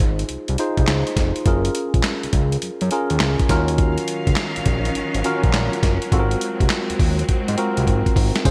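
Swung sixteenths drive this punchy, confident new jack swing excerpt, built on a gritty, compressed sampler-style drum kit of thumpy kick, medium-tuned snare, hi-hat, handclaps and tambourine, sitting up front in gated reverb, with a fill at 7.9 seconds. A fat, nasal, saturated analog bass and a bright, clean tine electric piano with subtle chorus move through Dbmaj9, Gbmaj9 and Ab13. At 3.8 seconds a lush, bowed symphonic string section adds sustained chords with vibrato, all set in light reverb and a bright 1980s-style digital production.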